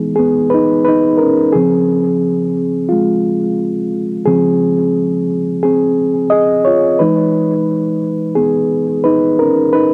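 Cassette-tape grain and a moderate studio reverb frame this dreamy, nostalgic hip hop excerpt at 88 BPM with a swung 16th-note feel in Db major, where a reedy, clean electric piano plays alone and up front through its built-in speakers, softened by a low-pass filter and echoed by analog delay as it moves from Emaj7 to Dbmaj7 at 1.6 seconds and back to Emaj7 at 7.0 seconds.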